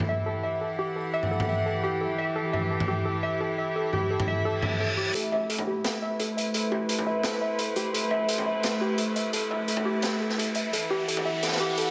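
A warbly, dusty pluck plays detuned, lo-fi arpeggios through lush chorus and dub echo, set over reedy, gut-string sustained chords from a bowed studio string section and a raw, saturated garage drum kit of hi-hat, medium-tuned snare and toms with a gritty, pumping small-room sound. The track is a tense, cinematic half-time drum and bass groove at 172 BPM in A dorian. A reverse cymbal at 4.6 s leads into a build-up from 5.1 s, where an electronic riser sits in the background and a filter sweep moves over the strings as the harmony shifts from Emadd9 to Amadd9, all inside a moderate, lush hall reverb.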